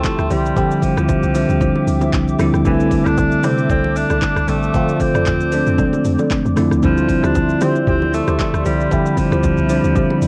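A bell-like tine electric piano with phaser sits up front in this deep, soulful amapiano excerpt in D minor at 115 BPM, where a breathy, distant alto saxophone with light vibrato carries the melody over a hollow, flute-like pad with chorus and sidechain pumping, a round, dark log drum bass, a smooth electronic R&B kit with a knocking kick and metallic hats, very quiet close bongos and congas, and a woody folk marimba that adds delayed stabs in the background from 1.0 s, with much of it carrying the character of a home cassette recording.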